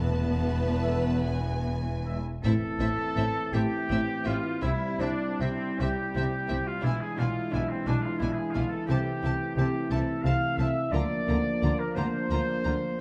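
Elegiac and melancholic, this slow romantic orchestral movement in A minor sways in a rubato 6/8 at 47-60 BPM, its intense, bowed violin melody sung with vibrato above a rich, very quiet second violin line, focused violas, distant warm cellos and a smooth, even double bass. A pure, hollow flute section murmurs in the background only until 2.1 s, and a distant, roomy oboe takes up the second line from 2.4 s, while warm horns hold sustained chords in the background and mellow trombones and trumpets join at 0.8 s with sustained chords and stabs. The harmony moves from a suspended E chord into A minor and on toward a closing Bb/D, all bathed in the dark production and a recital-hall reverb of this excerpt cut from a longer piece.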